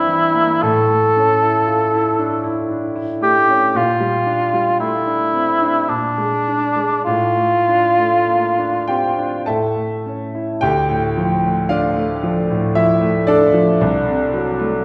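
Melancholic and yearning, this romantic classical duo for cor anglais and grand piano moves slowly in D minor, at 49-59 BPM in a flexible 3/4 with rubato phrasing. The cor anglais carries the melody up front with a mellow tone and light vibrato, singing in a narrow band from D4 to A4 until it falls silent at 9.4 seconds. The grand piano accompanies throughout, its clear, smooth and slightly vintage sound ringing with long sustain across a span from C2 to A5, and it carries on alone to the close at 14.8 seconds. The harmony passes through Em7b5/G, A, Gm/Bb and Bb7 before settling on Dm/A, and a new passage opens at 10.6 seconds on D minor, turning toward D7/C. A wet recital hall reverb gives the pair the airy resonance of a church or concert hall, and the excerpt is cut from a longer piece.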